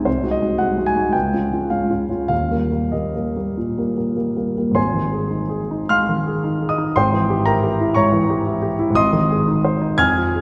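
A solo concert grand piano opens on an Ab7 chord over C, moving through Db and Eb in a passionate, romantic character piece in Ab major, played with free rubato between 93 and 122 BPM in 4/4. Its deep bass and short sustain sit up front within a long, wet church reverb, and the tone stays warm from the low Ab1 to the high Ab6. At 4.8 seconds a new passage settles on Ab, darkens briefly through a diminished chord over an Ab bass, and returns home to Ab as this short fragment of a longer piece ends at 10.4 seconds.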